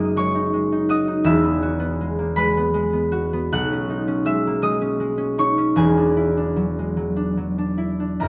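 A concert harp plays alone in this peaceful, serene classical fragment in a rubato 6/8, its fingerpicked, ringing tones reaching from E1 to F#6 over chords that move from F#69 through Eadd9 and B69 to E9, the instrument up front yet heard from further back in a wet stone room.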